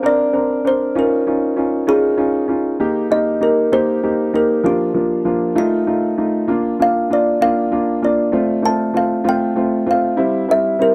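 A kalimba melody and an upright piano accompaniment begin together, opening this short, heartfelt pop fragment in Bb major. The swaying 6/8 metre moves at a gentle 65 BPM counted in dotted quarters, with a straight feel. The kalimba carries the tune with a ringing, hollow-box tone, each thumbnail pluck sounding dark, woody and smooth. Beneath it, the piano sits up front with a boxy, wooden character, supporting the melody as the harmony travels from Bbadd9 through Dbadd9, Eb and F7 before settling on Bb and closing toward C/G. The sound is dry and close, in the manner of a 1970s studio recording, with a modest booth ambience around both instruments. The passage runs 10.9 seconds, cut from a longer piece.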